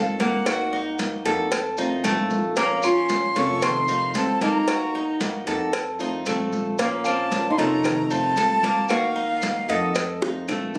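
A straight 4/4 groove at 114 BPM sets a sultry, danceable Cuban son and guajira feel, carried by ringing, saturated congas, tight high-tuned cowbell and bongos, woody claves and grainy, vintage maracas sitting in the background. Underneath, a dark, boxy fingerpicked old ladder-braced acoustic guitar, a bright, metallic Cuban tres playing arpeggios on double strings, and a thumpy gut-string pizzicato upright bass cycle through Ebm, F7 and Bbm. Up front, a breathy, close-miked concert flute carries the melody over a fresh-stringed flamenco guitar second line with audible finger squeak, all within moderate studio reverb and a compressed, phone-in-the-room sound, before a drum fill at 10.2 s closes this cut from a longer piece.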